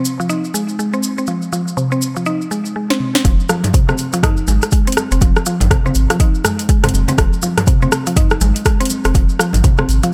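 A woody, mallet-like synth pluck opens this afro house excerpt, spinning mellow arpeggios colored by chorus, sidechain pumping and dub echo, with a grainy cabasa shimmering quietly beneath it from the start. The mood is driving and spiritual, set in a swung 4/4 over an Fm7 chord. A brief drum fill from the afro-pop kit at 2.9 seconds, with its sharp snare, metallic hats, rim clicks and toms, leads into the drop at 3.2 seconds. There a deep electronic kick hits up front, and a round, dark analog bass enters with a filter sweep and its own sidechain pumping, anchoring the music on F minor. Ringing, medium-tuned congas played with soft hands join at 3.3 seconds, sitting in the background of a small room while light reverb gives the mix a touch of space.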